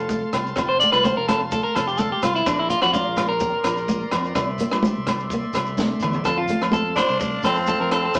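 Highlife guitar band at 126 BPM in F major, joyful and straight in 4/4, with a twangy, slightly broken-up electric guitar up front playing arpeggios and a clean solo through the opening 6.3 seconds, over a boxy, woody acoustic guitar, a reedy organ with key click, slow rotary speaker and overdrive holding sustained chords, and a growly, punchy fingered bass. A compact cocktail kit with a high-tuned snare and tight kick, hard-handed damped congas, ringing agogo bells and a grainy shekere drive the groove, and a drum fill at 5.8 seconds leads into a new section where a raspy tenor saxophone with light vibrato enters up front at 7.0 seconds. The band sounds like it is playing live in one room through a small speaker, with wet studio reverb, and this is a short excerpt from a longer piece.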